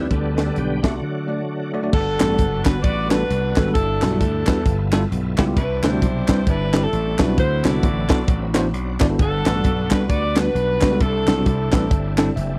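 A dry, close 1970s-style studio sound frames this jubilant, soulful uptempo gospel excerpt in G major at 132 BPM with a swung 4/4 feel, opening on a brief tonewheel organ solo and a break. The shouting, lightly overdriven organ with fast rotary speaker and chorus vibrato sits in the background beneath a bell-like, clean tine electric piano, while a punchy slap bass and a tight funk drum kit with a high-tuned snare drive the groove up front. At 1.9 seconds a bright saxophone section with a soft attack and vibrato takes the melody, joined shortly after by crisp group handclaps, and the electric piano adds a fill at 12.1 seconds over rich chords such as Gmaj9, Cmaj9 and D13.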